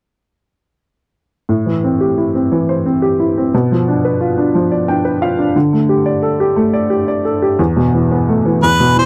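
Aching and melancholic, this brief pop excerpt in A minor moves at a slow 59 BPM in 6/8, where a worn, woody, slightly detuned upright piano with short sustain sits up front through chords from Am7 to Esus4, adding a fill at 4.5 seconds, before a solo harmonica with light vibrato and scooped, jazz-style notes enters only at 8.6 seconds, all captured in a dry, close 1970s-style studio with modest booth ambience.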